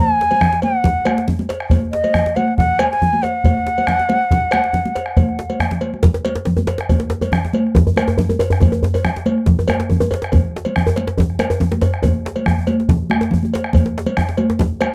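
A dry, close 1970s-style studio sound with light reverb frames this earthy, festive West African drum ensemble excerpt at 140 BPM in a straight 4/4, where an airy, bamboo-toned bansuri, somewhat unsteady, with vibrato and a soft attack, carries the melody up front over a deep djembe with metal rattles, bright high-tuned congas, a round bombo and a metallic, band-limited vintage cowbell until a drum fill at 5.6 s leads into a second section, where a tight, cracking djembe with its own rattles joins up front from 6.0 s.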